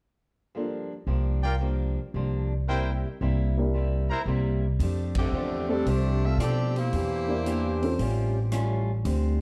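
Joyful and swinging, this big band jazz excerpt moves at 113 BPM in F major with swung eighths, built on a boxy picked archtop guitar, a mellow, intimate upright piano with audible action noise, and a woody pizzicato upright bass sitting up front. A bright trumpet section with a smooth top plays stabs from 1.4 seconds, then a swinging drum kit with a punchy kick, ride cymbal, hi-hat and rim click enters at 4.8 seconds, just before a band accent at 5.1 seconds and a clear saxophone section taking the melody with vibrato. The chords run from Gm7 and C7 to F69, Em7b5 and A7alt, framed by light reverb in a dark, warm production.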